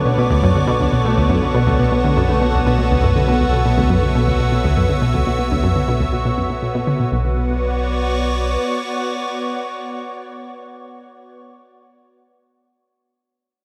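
A lush, detuned unison pad sits up front with bright, sustained Bm7 chords in this cosmic, expansive piece of sequencer-driven space music at 121 BPM in B minor, over a deep, dark round analog bass, a fast-attack sawtooth pluck riff soaked in chorus and delay, a very quiet mellow concert harp ringing out arpeggios, and a pulsing, tempo-synced gated texture in the background, all in an echo-heavy mix with a wet plate reverb and a filter sweep through the opening 7.1 seconds before the music settles on B minor, the pad sustaining alone to 11.5 seconds in this fragment cut from a longer piece.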